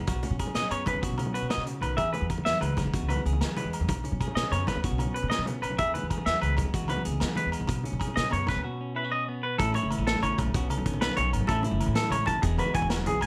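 Highlife guitar band music, sunny and joyful, moves at 126 BPM in a straight-feel 12/8 in E major, with a bright, twangy lead guitar up front spinning arpeggios through a slapback echo from 0.6 seconds over a second clean electric guitar's picked accompaniment. A woody pizzicato upright bass anchors the groove alongside a gritty, saturated vintage drum kit with a tight kick and rolled-off top, while thin-skinned congas and ringing agogo bells sit in the background. A drum fill arrives at 1.3 seconds and a break at 8.6 seconds leads into a new passage at 9.6 seconds, where the harmony moves from the Badd9 and E alternation to lean on A, all in a light reverb.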